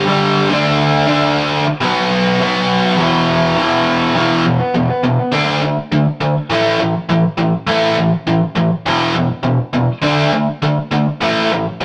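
A rough rehearsal-room recording with a moderate stone-room reverb frames this energetic, rowdy punk excerpt at 204 BPM, where a lone biting, overdriven electric guitar, picked, double-tracked and up front, drives through power chords from G5 and D5 to E5 and A5 across its 11.8 seconds.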